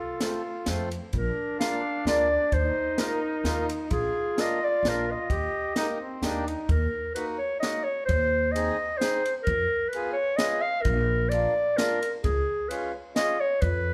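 A mellow, softly attacked clarinet carries the melody up front from the start, with a trumpet adding a gentle second line with vibrato until 6.7 seconds, when the festive, jolly alpine folk dance in 3/4 at 130 BPM turns from Eb major to Eb minor. A reedy, vintage-sounding accordion fills in the accompaniment, while a compact cocktail kit with dark cymbals, a high-tuned snare and a punchy kick keeps time, and a woody, thumpy pizzicato upright bass sits forward from 0.7 seconds. The band plays together in one room, bathed in a lush large-studio reverb, in this fragment cut from a longer piece.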